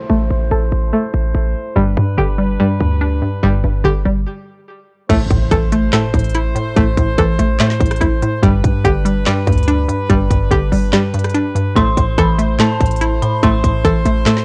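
This eerie, menacing trap cut opens on sustained chords from a bright, close-miked brass section, softened by a low-pass filter, alongside twangy, string-like resonator arpeggios carrying chorus, filtering and tape echo, while a very quiet electronic downlifter sinks beneath them. A punchy, heavy 808-style bass with a sine body and noise layer sits up front almost from the start. At 1.8 seconds a hollow, bouncy square-wave pluck with detuned chorus joins as accompaniment, and a filter sweep builds through the opening before a brief stop. The trap kit lands at 5.1 seconds with a quiet impact, bringing a hard-clipped kick, woody snare, crisp hats, handclaps, rim clicks and crash, all roughened by vintage 12-bit sampler grit, in a half-time feel at 144 BPM. The kick drops out briefly before a dark, inharmonic FM bell, warbling through chorus and tape echo, enters high at 11.8 seconds as the A minor and G chords cycle. 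The mix is dry and gritty, with cassette-tape character, and the piece is cut from a longer work.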